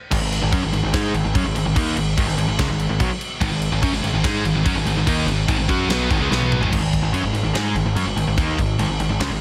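Hard rock with an aggressive, driving feel, built on riffs from an overdriven semi-hollow guitar and a very quiet, double-tracked sludgy guitar over growling, punchy picked bass and a big, up-front acoustic drum kit with a punchy kick and rolled-off top, while a bright, scooped high-gain guitar joins from 3.4 to 6.7 seconds before a drum fill leads into a new section at 6.7 seconds, all under light reverb and a dense, heavily limited modern master.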